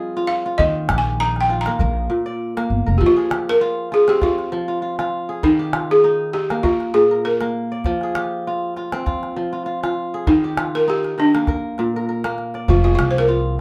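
Flowing and reflective, this lightly swung West African string-and-xylophone excerpt features a buzzing, dry balafon melody played with rubber mallets, which takes a solo in the first 3.0 seconds, over bright, ringing fingerpicked kora arpeggios, a deep calabash, and a thumpy pizzicato upright bass that sounds only briefly near the start and again from 12.7 seconds, all heard in a moderate live-room reverb.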